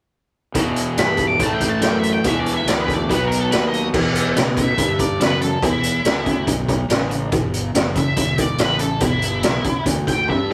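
Brooding and smoky, this blues rock power trio cut leans into southern rock with a straight 4/4 drive, heard here as a short slice of a longer piece. An overdriven, double-tracked electric guitar picks a low riff with a touch of spring reverb, alongside a growly, fuzzed fingered bass that sounds bright and amped. The raw garage drum kit sits up front with a high-tuned snare, boomy kick, hi-hat and crash, its gritty, saturated tone rolled off at the top and set in a small room. From 1.0 seconds an octave-fuzz lead guitar carries the melody high above, dark and distorted with wah. The chords move from Em through A5, E5 and B before settling on Em7 as the second section begins at 3.9 seconds, and a drum fill lands at 10.3 seconds. Light reverb and a rough rehearsal-room feel give the whole take an unpolished, raw edge.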